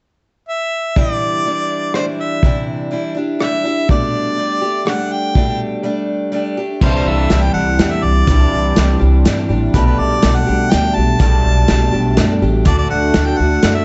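A harmonica carries the melody from 0.5 seconds in this nostalgic folk rock and heartland rock excerpt, its tone smooth on top with light vibrato and scooped notes. A boxy parlour-style acoustic guitar and a lo-fi vintage drum kit with a muffled, rolled-off top and punchy kick join it at 123 BPM in a straight 3/4 feel. The chords move from Cadd9 to Gadd9/B. At 6.8 seconds a dark, slightly broken-up electric guitar with analog chorus adds a picked riff, and a woody, growly upright bass played pizzicato sits up front beneath it. At 12.7 seconds a reedy, close-miked accordion slips in very quietly with sustained chords as the harmony arrives on D. The whole production is warm and dark, with light small-room reverb.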